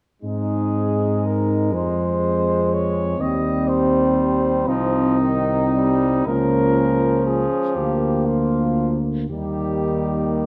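A moderate recital hall reverb surrounds this short, hymn-like brass band passage in Ab major, cut from a longer classical piece, with the parts sounding together from 0.2 to 10.5 seconds. The mood is lyrical and serene, moving at a slow 40 beats per minute in 6/8 with uneven, rubato beats. A dark cornet carries the melody up front with light vibrato, though its tone feels distant and roomy, while a tight French horn section with a warm, soft attack and light vibrato sings a second line in the background. A brilliant, vintage-sounding trombone and a very quiet, mellow euphonium with a smooth top fill in the accompaniment. An up-front tuba anchors the bass with a punchy attack, light vibrato and a rounded upper edge. The harmony moves from Ab through Fm, Cm/Eb, Bbm/Db and Bb/D before settling on Eb at 9.3 seconds.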